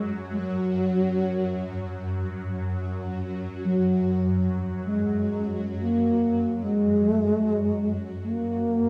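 Spacious and peaceful, this short excerpt of free-time world meditation music rests in F# major pentatonic, with a breathy bass flute carrying the melody in its low register from F#3 to A#3, its tone marked by vibrato, tongued notes and expressive phrasing up front. Beneath it, a shimmering, ethereal ambient pad holds a drone spanning F#2 to F#3, its bright triangle tone given an octave-up shimmer, slow attack, long release, granular texture, chorus, phaser and built-in reverb. Both parts play throughout the 8.9 seconds and carry cassette tape colour, set in a wet studio reverb as a home recording on cassette.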